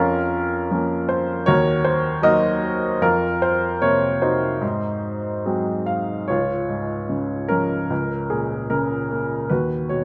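Classical solo piano in a lyrical, calm vein, moving at 70-80 BPM in 4/4 with a flexible rubato feel, settling into Db major from 6.3 s in this short cut from a longer piece. A clear upright piano carries everything alone from Db2 to F5, its woody, slightly detuned tone sitting up front with long sustain under light reverb. The harmony drifts through Bbm/F, Ebm, Fsus4 and Ab7 before arriving on Db at 6.3 s, then passes through Bbm7/Db toward Cb/Eb.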